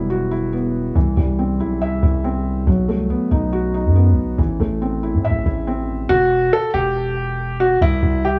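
Drill hip hop at 140 BPM in a half-time feel, tense and cold in E harmonic minor, where a dark, felt-muted upright piano plays filtered accompaniment until 6.1 seconds over a deep, sine-like 808 bass that runs throughout, before an intimate concert grand piano with audible action noise takes the melody through low-pass filtering and analog delay, all set in a dry, gritty cassette-tape sound with small-room ambience, moving through Emadd9, C, B7 and Am in this cut from a longer piece.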